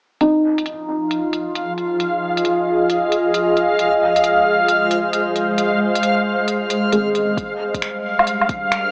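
Future garage at 134 BPM in F dorian with a swung 4/4 feel, rainy and wistful: a dark, thick-felted upright piano plays a sidechain-pumped, low-passed, filter-swept accompaniment through analog delay over an ethereal, detuned pad thick with chorus and phaser that also pulses to the sidechain, while an overdriven, up-front kit of finger snaps, smooth hi-hats and woodblock runs under its own filter sweep, a bright, reversed granular texture swells on a high F from 1.6 s, and a soft overdriven kick arrives at 7.4 s, the mix sitting in huge ambient reverb and a cassette-tape, small-speaker haze.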